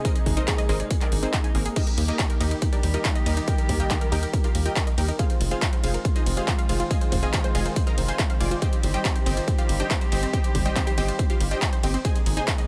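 Uplifting and euphoric, this short cut from a longer uplifting trance track drives along at 140 BPM in a straight 4/4, set in Eb major. A punchy, up-front electronic kick leads the mix, joined by a big-room dance kit with metallic hats, crash and ride cymbals, and handclaps, both kits layered and re-recorded in a small room. A tight sequencer bass enters at 0.3 s with a driving, mellow filter-pluck tone, pumping against the kick, while a lush, detuned unison pluck carries the melody with vintage 12-bit sampler grit, delay and sidechain pumping. Behind it, a second unison pluck spins delayed arpeggios, and a dark chamber string section sustains bowed chords with a nasal, reedy gut-string tone, both sitting in the background and pumping with the kick. A brief electronic swell appears between 1.1 and 1.8 s, just as the harmony moves from Abadd9 to Eb, then on through Fm7 and Cm/G before returning to Abadd9, all in a dry sound with little reverb.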